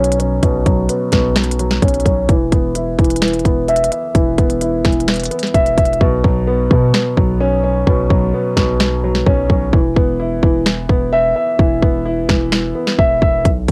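A dark, mellow grand piano leads this melancholic half-time trap fragment under a filter sweep for its first 6.0 seconds, its vintage, cassette-tinged tone sitting up front and ringing with long sustain over alternating Bsus2 and E5 chords. Beneath it, a deep, sine-like 808 bass holds long, decaying notes. A hard-clipped kick, sharp snare and finger snaps drive the produced electronic kit, whose crisp hi-hats drop out at 6.0 seconds, all set in a light reverb with the intimacy of a home cassette recording.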